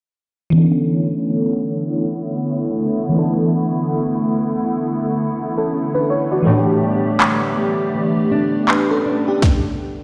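This sensual, moody contemporary R&B excerpt opens at 0.5 s with a dreamy, mellow FM electric piano, treated with chorus and phaser, over a hollow, flute-like pad that warbles with a vintage ensemble chorus. Both sit up front as a filter sweep runs through the Bm11, E7sus4 and A9sus4 chords. A dark, small-sounding, thumb-plucked nylon-string guitar enters with arpeggios at 6.5 s, complete with finger squeak, and a trap kit follows at 7.2 s with a hard-clipped kick, sharp snare and handclaps, the swung groove wrapped in a lush hall reverb and played through a big system in a bare room.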